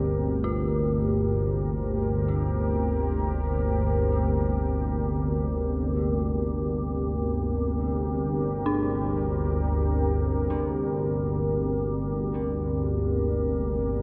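Dark ambient drone in free time and G minor, unsettling and dark, cut from a longer piece and resting on a single G minor chord throughout its 14 seconds. An organ-like drone, calm and detuned with an ensemble chorus, holds the low register up front, while a deep, moody sawtooth pad with a sub octave sustains slowly evolving chords above it. From 0.4 seconds an eerie, inharmonic FM bell plays arpeggios in the background, fading in gradually through dub echo inside an echo-heavy mix with a moderate plate reverb.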